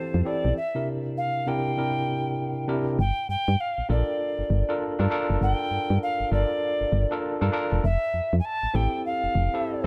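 Light small-room reverb frames this bouncy, punchy new jack swing R&B fragment, where an alto ocarina carries the melody with a pure clay tone and expressive vibrato over a worn, slightly out-of-tune tine electric piano with gentle overdrive and a round, dark FM bass with a fast attack, the swung groove moving from Fmaj7 and C7 to a long Gm7 at 3.0 seconds.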